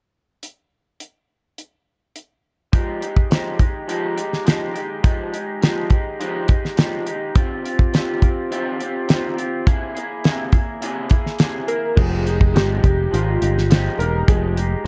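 A damped 70s drum kit, dry and up front with a fat snare and tight kick, opens this laid-back, nostalgic slice of indie and bedroom pop from a longer piece. At 2.7 seconds, a bright, twangy electric guitar through a small old amp joins on accompaniment, slightly broken-up and picked, with analog chorus and a warbly pitch drift as the chords move through Fm9, Eb69 and C7b13. Warbling, detuned lo-fi synth keys take a mellow melody from 11.7 seconds, and a round, dark picked electric bass enters at 12.0 seconds, all set in a small room with a dark production.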